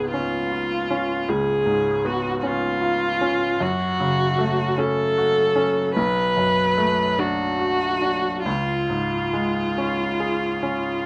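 A rich, focused bowed viola with vibrato carries a yearning, melancholic melody in this romantic classical fragment, backed by a bright, brilliant baby grand piano with long sustain, both heard up front in a close, detailed, nearly dry recording that moves through C#7, F#m, Bm7 and C# in a rubato 12/8 at about 45-53 BPM.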